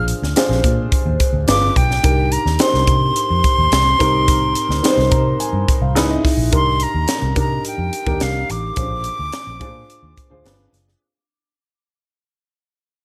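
Slick and urban, this polished 1980s jazz-funk pop excerpt in C minor moves at 107 BPM in straight 4/4, with a breathy, close-miked silver concert flute carrying the tongued, tape-echoed melody over a dark baby grand piano treated with lush chorus, its action noise audible. A round, foam-muted fingered electric bass and a crisp fusion drum kit with a punchy kick, high-tuned snare and gated reverb complete the band, while the piano adds a fill from 4.8 to 6.5 seconds. The harmony passes through Bb9, G7b9, Cm7 and Dbm7 in a studio reverb, and the music fades out from 6.5 seconds.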